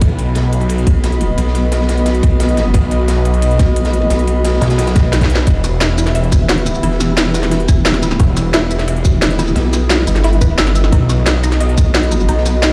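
Heard through a big sound system in a bare stone room, this excerpt from a longer track of dark technical drum and bass carries a light stone-room reverb. At 176 BPM in a straight 4/4 in E harmonic minor, the mood is aggressive and dark, moving from B to Em and back to B. A tight, up-front electronic kick anchors the drums. It is layered with a produced kit of cracking snare, crisp hi-hats and shaker, while a gritty, saturated acoustic breakbeat kit with dark, rolled-off ride cymbals and a medium-tuned snare sits lower in the mix. A growling, detuned sawtooth bass snarls with overdrive from the start, and at 0.9 seconds a nasal vowel-sweep wobble bass with a resonant formant filter joins it up front. Behind them, a deep, moody, warbling pad holds sustained chords with a vintage sub-octave weight, and an airy, breathy pad adds a soft noise-tinged layer, both pumping to the sidechain. After a drum fill at 5.1 seconds, a lush, punchy unison pluck enters at 5.5 seconds with arpeggios coloured by phaser and digital delay.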